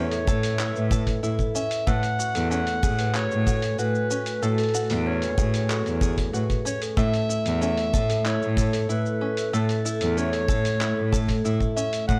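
Pastoral and delicate, this short folktronica clip moves at a straight 94 BPM in A major, with a smooth classical-style clarinet carrying the melody through digital delay while a bell-like celesta rings softly in the background on a second line. Fingerpicked, plunky open-back banjo arpeggios, also echoed by delay, sit over a rich, bowed cello bass played up front with vibrato, and a warbling, nostalgic tape-like pad hums very quietly underneath as the harmony shifts from A to F#madd9 at 1.9 seconds and back to A at 7.0 seconds. A muffled, pitched-down sampler-style kit of handclaps, hi-hat and shaker joins with a punchy acoustic kick, both set in studio reverb, all within a dark, warm production and small-room ambience.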